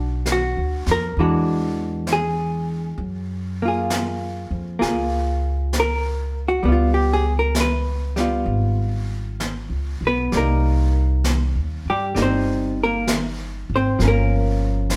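A dark, clean hollow-body jazz guitar sits up front, its compressed, picked chords moving through Bm, E9, Gbmaj9 and Db7#11 in this melancholic, intimate jazz ballad at 66 BPM with a gentle swing. A woody pizzicato upright bass with steel strings, also up front, anchors the low end from the start, while a brushed drum kit with a medium-tuned snare and hi-hat joins softly at 0.3 seconds. The trio plays live together in a moderate stone room whose reverb lends the short passage a natural, close-knit air.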